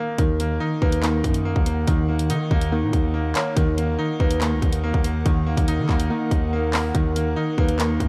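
An up-front drill drum kit leads this menacing, cold cut from a longer piece. Its hard-clipped kick, handclaps, rim clicks and warm hi-hats drive a half-time 4/4 groove at 142 BPM in Eb minor. Beneath it, a heavy, aggressive 808-style bass with distortion and a noise layer spans Db2 to Eb3, each note striking fast and then decaying over an Eb minor chord. A bright, brilliant concert grand piano with deep low end plays accompaniment, while soft, round electric-piano-like synth keys spin gentle arpeggios coloured by chorus, tremolo and tape echo. In the background, a hollow, woody clarinet-like synth lead carries a second line with vibrato, chorus and tape echo, and from 1.1 s an ethereal, airy pad of detuned unison voices holds sustained chords in ensemble chorus and its own reverb. Dark production and light reverb keep the atmosphere shadowy and threatening.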